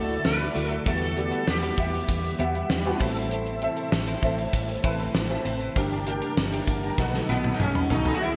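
1980s-style pop at 98 BPM with a glossy, nostalgic mood, in which a gated drum kit with a fat snare sits up front alongside a round, foam-muted fingered bass, a clear, polished grand piano with audible action noise, a very quiet ethereal pad and a twangy, chorused twelve-string electric guitar riff in the background, while a dark, overdriven lead guitar carries the melody at the opening and again near 7.3 seconds, warbling synth brass stabs arrive at 6.8 seconds, and a drum fill caps this bright, hall-reverb-bathed excerpt from a longer piece.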